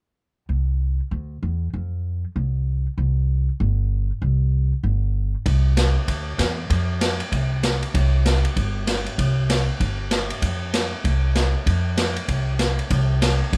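Down-home and playful, this fragment of country western swing in C major runs at a brisk 193 BPM with a swung 4/4 feel, opening with a woody, thumpy pizzicato upright bass on gut strings up front, joined at 5.5 s by a roomy big-band drum kit of hi-hat, punchy kick, medium-tuned snare and ride cymbal with a rolled-off top, all in light reverb and tuned to A4 = 444 Hz.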